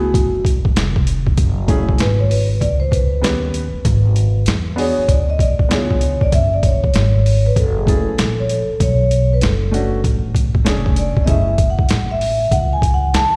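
This cool, smoky jazz-hop excerpt opens with a mellow soft-mallet vibraphone, a smooth vintage grand piano and a woody pizzicato upright bass, joined almost at once by a gritty, sampler-style boom bap kit. The drums sit up front, overdriven, compressed and pitched down, with a thumpy kick, a high-tuned snare and hi-hat in a swung 4/4 feel, while the steel-strung bass holds the low end just as close. From 1.4 seconds the vibraphone takes a solo, its metallic, ringing tone with the motor off carrying a slapback echo over minor chords rich in ninths and elevenths, with altered dominants along the way. The piano, also touched by slapback echo, offers short-sustain accompaniment until 11.5 seconds. The whole performance sounds like a live gig heard through the venue's PA, with recital hall reverb surrounding the band.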